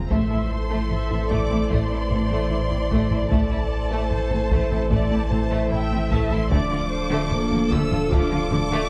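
A lush, vibrato-rich studio violin section carries a distant high melody through this vast, futuristic slice of hybrid orchestral and electronic film score in A minor at 75 BPM, supported by a smooth symphonic violin second line, woody viola accompaniment, background cellos, a very quiet double bass section, mellow close-miked French horn chords, a swirling, nasal phased analog pad, a faint, tight sequenced synth arpeggio, a deep, clean sine sub bass and hushed hard-stick taiko drums, set in a dark, reverberant concert hall sound as the harmony moves from Am to Dm at 6.5 seconds.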